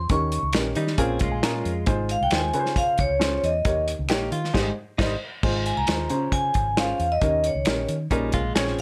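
A straight, punchy 4/4 groove from an up-front soul drum kit with dark cymbals drives this joyful, uplifting snippet of uptempo 1960s-style soul, where a round, foam-muted fingered electric bass and finger snaps in the background support a ringing, metallic hard-mallet vibraphone melody, an intimate baby grand piano with audible action noise adds an early fill, a clean, compressed direct-recorded electric guitar riff drops out at 5.1 seconds and returns at 8.1 seconds, and the band hits an accent at 4.5 seconds, all under light reverb.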